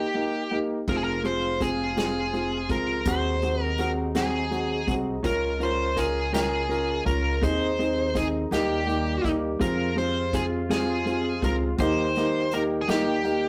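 A slow, swaying six-eight pulse at 55 BPM carries this heartfelt pop ballad fragment. It opens on Eb with an up-front grand piano and a smooth, overdriven electric lead guitar picking the melody. At 0.9 s a woody pizzicato upright bass and an acoustic drum kit played with bundle sticks (dark cymbals, punchy kick) come in, while a soft-attack, vintage brass section with light vibrato enters in the background. The harmony moves through Fm, Ab7/Eb and Db6 on its way back to Eb, all inside a wet small-room reverb that gives the rough feel of a rehearsal-room take.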